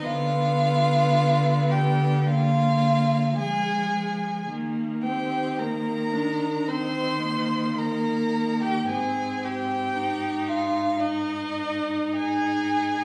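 A string quartet enters together on a diminished chord in this slow, tender romantic movement in Eb major, taken from a longer piece at 54 BPM with a flexible rubato feel. The first violin sings the melody up front with a warm, close tone, vibrato, soft attacks and expressive portamento, while the second violin shapes a full-bodied inner line with the same vibrato and sliding expressiveness. The viola fills in smooth, even accompaniment, and the cello grounds the bass with a close, resonant sound, all surrounded by a lush hall reverb as the harmony moves through Eb to an Ab chord.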